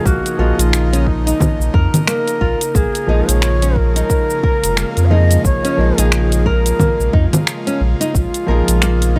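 A breathy, bright bansuri with a close-miked, unsteady straight tone carries a mystical, hypnotic melody over this organic downtempo passage at 89 BPM in Bb minor pentatonic, joined by a felt-muted upright piano with audible action noise, an airy pad with chorus, fingerpicked nylon-string guitar arpeggios, an up-front round sub bass with sidechain pumping alongside the electronic kick, and an afro-pop kit of congas, finger snaps, metallic hi-hat and shaker swinging on the 16ths, all in a small room as Gbmaj13/Bb moves to Bbm7 at 2.8 seconds.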